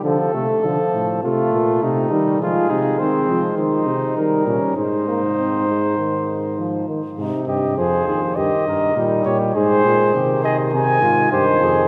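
A steady, straight 4/4 pulse at 101 BPM carries this serious, solemn excerpt of a classical imitative canzona for brass ensemble in Ab major. A mellow flugelhorn on the second line, a trombone and bass trombone with light vibrato and warm tone open together; both trombones sound distant and roomy, though the bass trombone also sits up front. At 2.4 seconds a dark, close-miked cornet enters with the melody, leading the group through a cavernous cathedral reverb.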